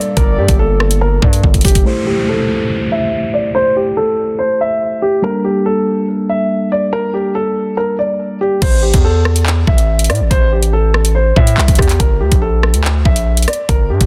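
A half-time drill groove at 142 BPM in A phrygian drives this ominous hip hop piece: a knocking kick, metallic hats, handclaps, rim clicks and crash cymbal sit up front beside a heavy, saturated 808-style bass, and both drop out after a drum fill near 1.9 seconds before returning at 8.6 seconds. A dark, intimate baby grand piano with audible action noise carries the melody through a low-pass filter and tape echo, over a mellow, clean tine electric piano that stops at 8.6 seconds. A brief, nasal analog pad and a fleeting gliding portamento lead with chorus color the opening, an electronic downlifter rides the filter sweep of the middle stretch, and the dense, heavily limited master keeps the sound dry and close.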